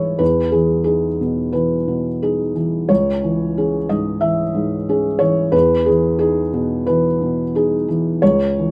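Neoclassical minimalist piano at 90 BPM in 4/4, played with a rubato feel, this intimate, wistful 8.7-second fragment of a longer piece features a solo felt-muted upright piano, mellow and close up front in a light reverb, spanning C#2 to E5 as it moves between Emaj7 and C#m chords.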